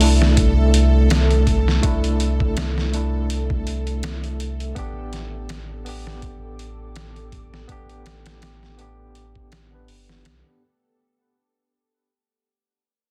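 A dense, heavily limited and fairly dry mix carries this melancholic, smoky trip hop fragment at 82 BPM with a light 16th-note swing, where a gritty, pitched-down, tape-warm sampler drum kit with a thumpy kick sits up front beside a round, soft dub sub bass under a filter sweep, a worn, slightly out-of-tune tine electric piano plays lightly overdriven with tremolo and tape echo over chords moving from C6 to A7sus4 at 4.8 seconds, and a dark, detuned ambient pad and a bright, tense string-like drone with vibrato hover in the background as the passage fades out across its 10.6 seconds.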